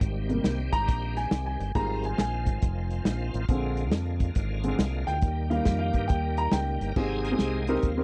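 This uptempo gospel excerpt moves at 138 BPM in 4/4 with a swung eighth-note feel in Ab major, and its mood is jubilant yet reverent. A soul drum kit with dark cymbals, a medium-tuned snare, a tight kick and a rolled-off top drives the groove alongside a round, punchy fingered electric bass run through an envelope filter. A woody, polished upright piano enters at 0.3 seconds and carries the lead through the opening stretch over Abmaj7, Fm7/Ab, Bb7 and Eb. A full, shouting tonewheel organ, with audible key click, chorus vibrato and a slow rotary speaker, holds sustained chords underneath and then takes over the solo at 7.0 seconds as the harmony returns to Abmaj7. The sound is a dry, close 1970s-style studio recording with little reverb, placing the drums, bass and piano up front with a warm character.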